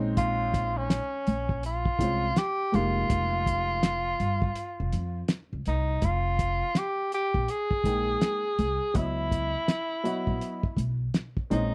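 A breathy, whispered tenor saxophone with subtone, scooped notes and a slapback echo leads this nocturnal, cool jazz-hop clip, over a dark, worn upright piano with audible action noise and slight detuning, a woody pizzicato upright bass, and a cloth-damped, muffled drum kit with a fat snare and tight kick, all captured in a dry, close 1970s-style studio sound with a break at 4.6 seconds.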